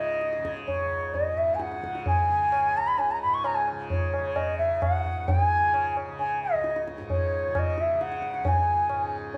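In a straight 7/4 at 131 BPM that gradually speeds up, this short Hindustani classical passage in raga Kafi on C# carries an introspective, longing mood. A pure, bamboo-toned bansuri sits up front with vibrato and tongued notes, carrying the melody from C#5 to C#6 over a softly plucked tanpura drone whose buzzing, shimmering tone hums low in the mix. The high-tuned, ringing tabla joins at 0.2 seconds, close, dry and prominent, while the live ensemble shares a reverberant stone room.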